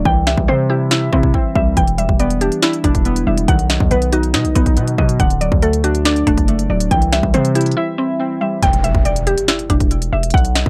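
Eerie and hard-hitting, this half-time trap cut at 140 BPM in E minor pairs warbling, detuned lo-fi synth keys that drop out at 8.6 seconds with a woody, chorused mallet-like pluck playing arpeggios, a distorted, saturated 808-style bass, an up-front trap kit of hard-clipped kicks, sharp snares and crisp hats, and a background electronic impact from 8.6 seconds, all in light reverb over chords moving from C through Em7, B and D.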